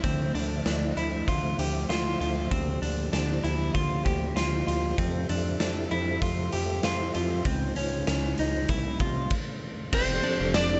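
Heard through light reverb and a small-room ambience with softened highs, this blissful, dreamy dream pop fragment drifts over Dm7, Bb6/D, Fmaj7 and Dbmaj7 chords, with a clean, dark electric guitar picking arpeggios through subtle chorus and delay up front, a fat, detuned sawtooth analog bass, and a gritty, saturated garage drum kit with punchy kick, snare, hi-hat, ride, crash and tambourine in a bright, pumping stone room. A soft, flute-like tonewheel organ holds sustained chords in the background with chorus vibrato, key click and a fast rotary speaker. After a stop from 9.3 to 9.9 s on a C7b9, a slightly broken-up electric slide guitar, played with fingerpicks, enters on an F69 at 9.9 s.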